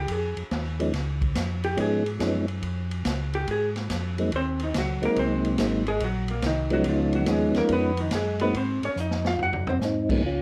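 A swung 4/4 groove with a brisk, greasy feel drives this soulful soul jazz organ trio clip, cut from a longer piece. A dark, clean, picked hollow-body electric jazz guitar sits up front and takes a compressed solo from the start to 10.2 seconds. Beneath it, a round tonewheel organ carries the bass line with chorus vibrato and a slow rotary speaker, while a soft, flute-like organ with second-harmonic percussion enters at 0.8 seconds to play the melody, also up front, with its own slow rotary, chorus vibrato and plate reverb. An acoustic drum kit with a medium-tuned snare, boomy kick, hi-hat, ride, crash and toms swings in a natural studio room and plays a fill from 9.0 to 9.8 seconds. A moderate club reverb and a worn, warbling cassette-tape quality with pitch drift give the whole recording an aged character.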